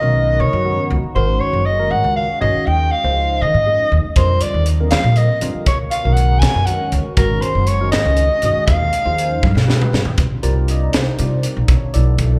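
Driving and nocturnal, this electric jazz fusion excerpt in 6/8 sets a breathy, whispered soprano saxophone melody with slapback echo over a clean tine electric piano, a swirling phased analog pad in the background and a woody, bright pizzicato upright bass up front, before a crisp fusion drum kit with a high-tuned snare and punchy kick enters at 4.2 seconds, plays a fill from 9.4 seconds and carries the music into a new section at 10.2 seconds, captured live through the venue's PA.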